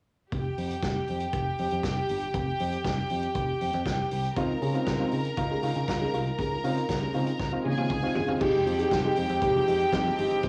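A straight 4/4 disco groove at 119 BPM opens this sultry, glamorous excerpt in F minor, with a vintage acoustic drum kit of punchy kick, medium-tuned snare, hi-hat, toms and dark crash cymbal, its top end rolled off and its sound steeped in cassette tape. A fingered electric bass, round and dark, holds down the low end from 0.3 seconds alongside a bright studio violin section that plays a second line with light vibrato and an earthy, up-front edge. After an opening Fsus2 chord, a dark concert grand piano enters at 4.4 seconds on Dbmaj9, its mellow, boxy tone carrying deep bass and long sustain. A drum fill leads into a new section, where a clear string section arrives at 8.4 seconds with soft-attack, floating sustained chords in the background over Fm9. The whole excerpt has the feel of a home recording on cassette, with light reverb from a small room.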